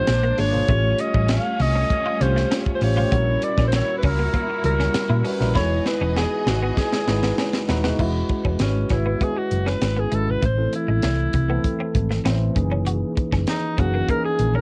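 A breathy alto saxophone melody opens over a mellow, lushly chorused tine electric piano, background studio strings, and a bright, compressed semi-hollow guitar riff, joined by a round, dark hollow-body bass, a tight, dry funk drum kit with a high-tuned snare, and barely audible congas in this breezy, glossy 1980s jazz-funk pop excerpt at 98 BPM in E major, where a drum fill leads the strings out at 8.0 seconds into a subtone sax solo, all with a light reverb and a cassette-tape tint.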